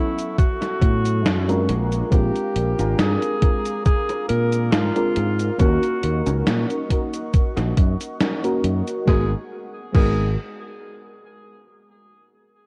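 A slow 69 BPM 4/4 groove with a light sixteenth-note swing opens this nostalgic, melancholic vaporwave fragment, where a thumpy, overdriven electronic kick sits up front beside a growly fingered electric bass, a gated 80s drum machine adds snare, hi-hat, cabasa and crash cymbal, a dark, clean electric guitar riff and a soft, round FM electric piano with lush chorus and tape echo drift over A6, A#7 and D#m7 chords, a detuned sawtooth pad hovers in the background, and a breathy alto saxophone with vibrato carries the melody through a haze of worn, warbling cassette ambience until a G#m9 arrives at 9.1 seconds.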